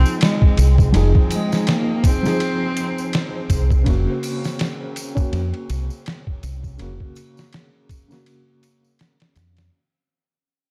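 Dark, hypnotic trip hop with a swung sixteenth-note feel, built on a gritty, pitched-down sampler-style drum kit with a thumpy kick and a round, punchy fingered electric bass, both sitting up front. A bowed cello with rich vibrato carries the melody through dub echo until 3.5 seconds, while a mellow, vintage felt-muted upright piano accompanies with tremolo and tape echo as the harmony moves from Fm7 to Gb/F. Close, dry tambourine and triangle add light percussion, a faint, breathy wind-like noise layer drifts in the background, and the whole clip fades out from start to finish.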